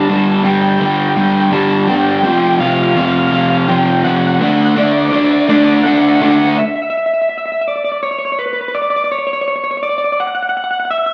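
A straight 3/4 pulse at 83 BPM carries this cinematic, soaring rock fragment, where a raw, double-tracked garage guitar with overdrive drives the riff up front through a build-up over G5, F5 and D until it stops at 6.6 seconds, while a slightly broken-up, lo-fi, compressed electric guitar through a small old amp picks the melody with spring reverb until 11.1 seconds, all of it caught as a band playing live in one room with a large studio reverb.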